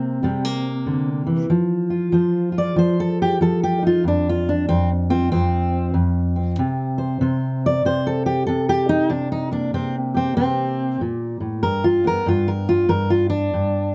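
A swung 4/4 groove at 95 BPM drives this rollicking, soulful acoustic country blues excerpt, where a lone fingerpicked steel-string jumbo guitar, full-bodied and up front with audible finger squeak, moves through C7, F5, C5 and G7 across its 13.9 seconds in a dark production with light reverb.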